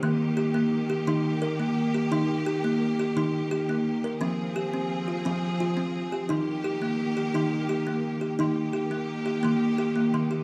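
Calm and gentle, this brief cut from a longer world-meditative piece in Eb major moves at 57 BPM in a straight 6/8, with an up-front kalimba playing woody, hollow arpeggios with a short thumbnail pluck over sustained chords from a distant, lush bowed string section whose bright, biting vibrato sits further back, all bathed in a wet scoring-stage reverb as the harmony moves from Eb to Fm and back to Eb before a new section arrives at 8.4 seconds.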